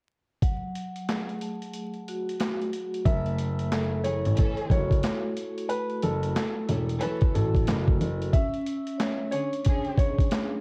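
A soft-mallet vibraphone and a gritty, sampler-style boom-bap kit open this excerpt at 0.4 s, setting a dark, reflective hip-hop mood in F# minor at 91 BPM with a swung 16th-note feel. The vibraphone sounds metallic and airy, with a slow motor vibrato. The compressed drums (thumpy kick, high-tuned snare, hi-hat and handclaps) sit up front with vintage 12-bit crunch and the character of a large room, and the kick drops out shortly before the second section. At 3.1 s a woody upright piano takes the melody while a dark, smooth baby grand plays the bass with long sustain and tube saturation, as the harmony moves from F#madd9 to F#m7 and later to E6. From 4.0 s a lush, bowed string section adds close, vibrato-rich stabs treated with digital delay. The mix is coloured by worn, warbling cassette tape, vinyl crackle and pitch drift within a small room ambience.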